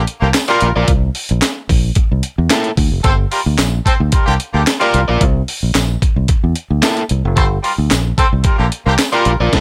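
Funk at 111 BPM in G dorian, this short, driving cut moves between Gm7 and C13 with a straight, funky 4/4 feel. A fingered electric bass opens at 0.0 s with a round, punchy tone sitting up front in a low register. A breakbeat sampler-style drum kit arrives almost at once, gritty and pitched up, with a thumpy kick, high-tuned snare, handclaps, hi-hat and crash cymbal carrying a tape-warm, compressed character. A horn section plays a second line with light vibrato and a roomy, ensemble sound, while an overdriven electric guitar, bright and picked, enters at 0.5 s as accompaniment. A jingly tambourine ticks along in the background, and the whole mix stays dry with little reverb.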